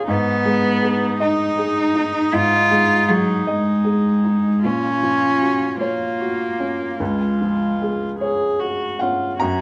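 A gently swaying 6/8 lilt, pulsing in dotted quarters and pushed and pulled by rubato, carries this tender, intimate neoclassical excerpt for piano and strings, tuned to A4 = 439 Hz. A felt-muted upright piano sits up front as accompaniment, its boxy, mellow tone and short sustain framed by audible action noise from the thin felt. A single bowed viola plays sul tasto beside it, its soft-attack tone pure and floating in a narrow middle register. A close, up-front cello carries the second line from 0.1 seconds, also sul tasto, with light vibrato and an airy bow that gives it a warm, hushed presence. The trio plays live together in a moderate stone room whose reverb lends a soft halo as the harmony moves from G#m through F#maj7/A# to C#.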